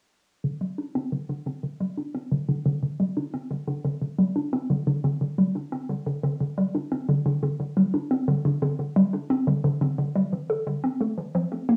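Heard through the soft haze of a home cassette recording in a wet, short-tailed studio reverb, this cosmic, mysterious ambient fragment features a hollow, detuned square-wave pluck, up front and warbling with chorus, tape character and delay, that repeats a bouncy riff from 0.4 to 11.8 seconds while a filter sweep moves across its arpeggio.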